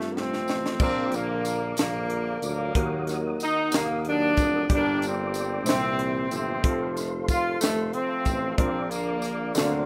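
Jubilant yet reverent, this slow gospel excerpt in 6/8 opens with a short fill from a crisp, airy drum kit with a punchy kick and high-tuned snare, then a tight, up-front horn section carries the melody over a warm tuba bass with vibrato, a clear grand piano and a soft, flute-like tonewheel organ with slow rotary and chorus vibrato in the background, while a jingly, close tambourine joins at 0.5 seconds, captured in a rough home-demo mix with light reverb.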